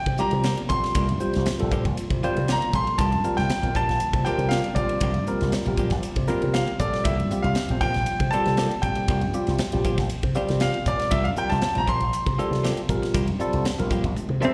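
A bright, soaring slice of electric jazz fusion at 118 BPM opens on a C9sus4, with a brilliant grand piano carrying the melody up front, its action noise audible and its notes lingering in plate reverb and echo over a very quiet, breathy pad. A punchy slap bass with an envelope filter, a crisp drum kit with a high-tuned snare, a phased tine electric piano heard through a combo amp, and clean, compressed guitar stabs sitting in the background fill out the groove. Near the end, at 14.2 seconds, the drums and electric piano play fills, and at 14.4 seconds a dark hollow-body jazz guitar enters briefly with a second line, all set in a live hall's reverb.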